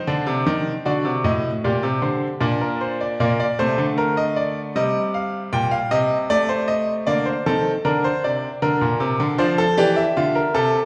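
A solo grand piano opens at once, its bright, brilliant tone sitting up front as it carries the lines of a baroque-style three-part fugue in 4/4, ranging from A2 to G5. The mood is solemn yet driving, with the piece moving into a new section at 3.2 seconds as the harmony shifts through chords like Bbmaj9, Cm and Bbadd9 before settling on Dm. A wet recital hall reverb places the listener further back in the room, and this brief passage, cut from a longer piece, ends at 10.9 seconds.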